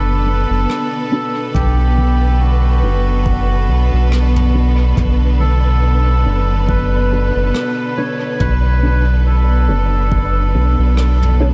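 Ambient dub at 70 BPM in B minor, this spacious, meditative passage cut from a longer piece rests on a single Bm9 chord with a gentle 16th-note swing. A round, dark analog bass sits up front with tube saturation, its sawtooth and sine tones shaded by ring modulation, while an electronic kick drum, deep and tape-softened, pulses in the background from 1.5 to 10.3 seconds. A clear symphonic string section holds lush, bowed chords with smooth vibrato throughout. Over them, a reedy, nasal melodica carries the melody between F#4 and C#5, trailed by dub echo, and a very quiet, muted chord stab with a filter pluck and phaser enters at 0.3 seconds. A soft brush kit of rim clicks and toms sounds distant and roomy, also sent through dub echo, and a wind-like tuned noise texture drifts in at 0.8 seconds with lush chorus and its own reverb. A very quiet, metallic vibraphone rings a single D4 only in the opening 1.9 seconds, and the whole mix has a light reverb and a rolled-off, mellow top.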